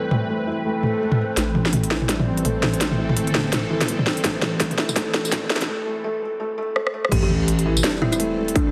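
A layered drum and bass kit sits up front with a cracking snare, crisp hats and tape-warm tambourine, rim clicks, toms and crash, driving this dark, spacious half-time drum and bass fragment at 167 BPM with a swung sixteenth feel over an A minor chord. Underneath, a felt-muted upright piano plays intimate, mellow arpeggios through a low-pass filter and delay, its action noise audible while a filter sweep moves across it, and a detuned, string-like drone holds tense sustained chords with phaser, vibrato, gritty 12-bit sampler colour and sidechain pumping. A grainy, flickering texture glimmers in the background at the opening, joined by a swell, before a deep, saturated wobble bass with chorus enters at 1.4 seconds as the build-up and drum fills gather. A distorted, overdriven electronic kick arrives at 4.2 seconds, and after a short break the drop lands at 7.1 seconds with an impact, a sub drop and a buzzing, woody kalimba melody echoing through delay. 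The whole mix carries an echo-chamber reverb and a heavily compressed, radio-like sound.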